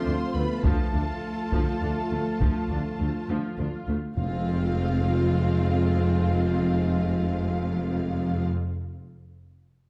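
Hard-stick taiko ensemble drums drive the opening of this dramatic, relentless cinematic orchestral cue at 68 BPM in 12/8 from 0.6 to 3.0 s, over a lush, smooth-topped bowed violin melody with vibrato, a distant, very quiet second violin line, focused violas, sustained chords from clear trombones and warm French horns, and a bass of dark, close-miked tuba, rich cellos and double basses, before very quiet, articulate timpani on hard mallets join at 4.2 s as the harmony moves from D minor to F minor, the whole set in a recital-hall reverb.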